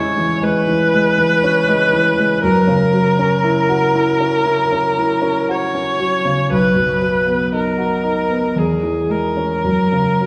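Rubato phrasing in 4/4 at about 59 BPM carries this serene, lyrical romantic classical excerpt, in which a single bowed viola sings a smooth, even melody with rich vibrato, while a warm, polished grand piano sits present and up front in accompaniment, moving through C#m/E, F#7 and B before returning to C#m/E and F#, the duo bathed in the wet reverb of a recital hall and a dark overall production.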